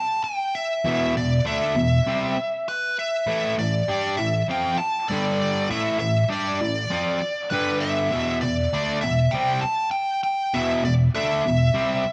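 A nasal lead guitar with a parked wah opens this menacing, heavy rock excerpt, its overdriven tone trailed by analog delay as it carries the melody between B4 and A5 in E phrygian. At 0.8 seconds a distorted electric guitar joins with the riff, its bright, compressed, double-tracked sound reaching from E2 up to G4. Both guitars sit up front at a steady 99 BPM in a straight 4/4. The harmony moves through E5, A5 and G5 before landing on Em at 8.1 seconds, where the opening section begins again. A moderate echo chamber reverb gives the recording a sense of space until the cut at 12.1 seconds.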